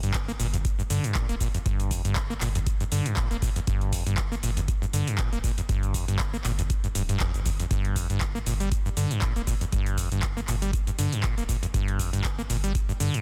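A squelchy, resonant sawtooth acid bass riff with an overdriven, tape-saturated bite leads this hypnotic, trippy acid house excerpt in G minor, over a round sine sub bass pumping with sidechain, an overdriven deep electronic kick and a booming analog drum machine carrying cabasa, handclaps and metallic hi-hats, all in a dry, dense, heavily limited mix.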